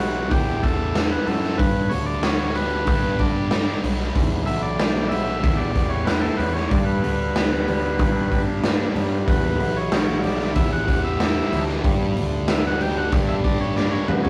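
Psychedelic rock with a hypnotic, trippy pull, cut from a longer piece, where a buzzy, overdriven combo organ solos over a soft, flute-like tonewheel organ holding chords through a slow rotary speaker, a double-tracked fuzz guitar riff with phaser, a round, punchy fuzz bass, a gritty, up-front garage drum kit that enters at 0.3 seconds and closes with a fill at 13.8 seconds, and very quiet, ringing congas joining at 5.0 seconds, all captured as a rough rehearsal-room recording with light reverb as the chords alternate between Em and G.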